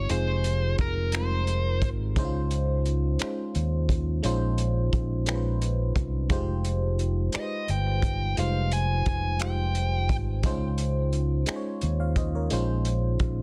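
A round, punchy fingered electric bass sits up front and carries this slow, sultry six-eight R&B excerpt in F minor at 58 BPM, its dark, amped tone anchoring the late-night mood. Beside it, a soul drum kit with a tight kick, finger snaps, hi-hat and a softly clipped snare sounds distant and roomy, its top end rolled off. An FM electric piano with a chorus effect plays glassy, bell-like chords with a fast attack that then decay, a noise layer woven into the tone, moving through Fm9, Dbmaj9 and Bbm11. A nasal lead guitar with a parked wah, overdrive and tape echo adds picked melodic phrases, first at the opening and again from 7.4 to 10.1 seconds. The dry, dense, heavily limited master keeps the sound close and intimate.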